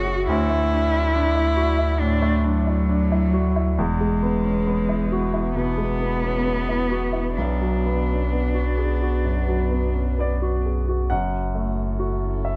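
A veiled, con sordino cello sings with vibrato up front until 10.6 s in this melancholic, longing neoclassical piano-and-strings fragment, drifting rubato at 62-70 BPM in 4/4 over a polished, short-sustained grand piano, a punchy sine sub bass with a pitch-drop attack, and a warbly, detuned lo-fi pad with chorus sitting mellow in the background, set in a lightly reverberant room as the chords move from Dsus2 through E and Bm to F#m7.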